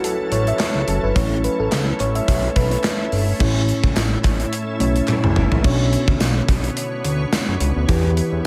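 A mellow FM electric piano opens this dramatic, nostalgic 1980s-style pop excerpt in B minor, its soft, round and dark tone carrying a solo through the first 3.4 seconds, over a shimmering, ethereal pad with an octave-up sheen and a punchy, up-front gated drum kit from the start. Almost at once a fat, thick analog bass enters, its saturated, detuned low end sitting level with the drums. A very quiet group handclap, crisp and close, adds a human touch until 5.2 seconds. At 107 BPM in 4/4 with a gentle sixteenth-note swing, the harmony moves from F#m7 to A, then to Bmadd9 and Em. A drum fill at 5.1 seconds, from the kit with its medium-tuned snare in a bright stone room, leads into the closing stretch, where the piano and pad keep sounding while light reverb and studio ambience surround the mix.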